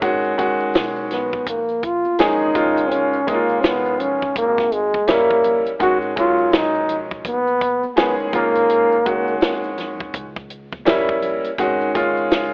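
Mellow and nocturnal, this jazz-hop excerpt at 83 BPM in G# dorian swings over a bright upright piano and a compact cocktail drum kit with a punchy kick and high-tuned snare, a woody pizzicato upright bass sitting in the background and very quiet maracas and congas, while a trombone carries the melody from 1.1 to 9.7 seconds with vibrato, scooped notes and slapback echo, all steeped in small-room reverb and the warbling drift of worn cassette tape with a telephone-like tint.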